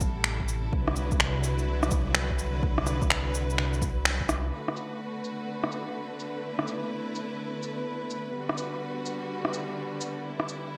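Swung 16ths at 126 BPM in 4/4 drive this melancholic, nocturnal future garage piece in B phrygian, where up-front, tape-warm electronic shaker, finger snaps, rim click and cabasa, dulled by low-pass filtering and gated reverb, sit over clear, smooth bowed strings pumping on sustained Am7, Cmaj9#11, Bm7 and Gmaj7 chords, while a deep electronic kick and a dark, rumbling, detuned saw bass with tube saturation drop out at 4.3 s and 4.5 s, and a very quiet, flickering granular texture drifts in at 5.1 s, all set in a moderate plate reverb with a bright 1980s-style digital sheen.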